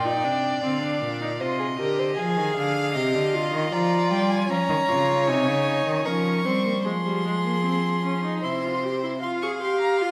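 Up front and close, a smooth, even cello carries the bass line with rich vibrato, falling silent at 9.2 s while the other three bowed players continue to the end of this stately, elegant baroque-style fugue excerpt for string quartet in 3/4. Above it, a focused first violin sings the melody high in its range, a second violin adds an expressive second line with soft attacks, portamento and a warm, intimate tone, and a more distant, full-bodied viola fills in the accompaniment. A moderate concert hall reverb gives the ensemble a graceful, spacious glow as the harmony settles into F minor, moving from C back to Fm at the close.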